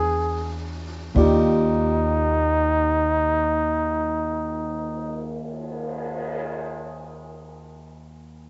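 In free time that slows over the opening moments, this intimate, romantic jazz ballad fragment sets a breathy, wah-wah plunger-muted trumpet with vibrato up front over a mellow, deep-voiced grand piano and a woody, thumpy pizzicato upright bass, while a brushed drum kit with dark cymbals and a punchy kick enters at 1.2 seconds; trumpet and bass stop at 5.4 seconds as the piano carries on, with light reverb and the muffled character of a home cassette recording.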